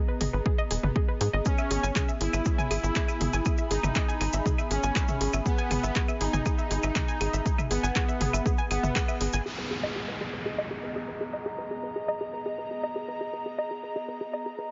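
A warbling, dusty pluck spins arpeggios over an airy, breathy pad from the very start of this dramatic, hypnotic melodic techno excerpt in G# minor at 120 BPM, both carrying chorus and sidechain pumping. A tight, nasal sequencer bass, an overdriven kick up front and a punchy analog drum machine with claves, handclaps, filtered hi-hats and toms drive the groove. From 1.5 s a fat, detuned synth brass melody with tape echo and a grainy, close cabasa join as the harmony shifts to E over G#, and after a band accent at 9.0 s the beat gives way to the pluck and pad beneath an electronic downlifter, all set in light reverb with a softened top end.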